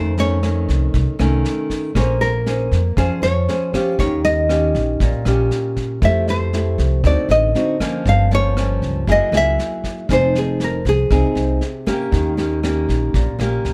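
Dry, closely miked and detailed, this intimate, wistful bossa nova fragment in F minor moves at 118 BPM. A fingerpicked nylon-string guitar carries the melody up front over a second nylon-string guitar, woody with old strings, fingerpicking a classical-style accompaniment. A pizzicato upright bass with steel strings sits forward, and a dark, smooth vintage brush drum kit enters at 0.2 seconds with a tight kick, rim click and medium-tuned snare, its top rolled off.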